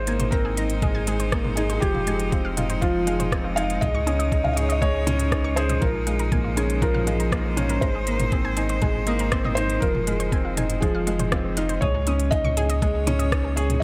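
Hopeful and luminous, this piano and strings electronica moves at 120 BPM in a straight 4/4, with a soft, felt-muted upright piano carrying the melody through delay while a second, woody upright piano with audible action noise repeats a riff beneath it. A bright, biting string quartet holds sustained chords over a deep, round sine sub bass, both pumping under sidechain compression, as a nasal, wave-folded analog pluck with chorus and delay ripples arpeggios in the background. An organic electronic kit with crisp hats, rim clicks and toms joins from 0.1 seconds, followed at 0.3 seconds by a muffled, thumpy kick, all under light reverb across a cycle of Abadd9, Fm7, Dbsus2 and Bbm7 in this brief excerpt.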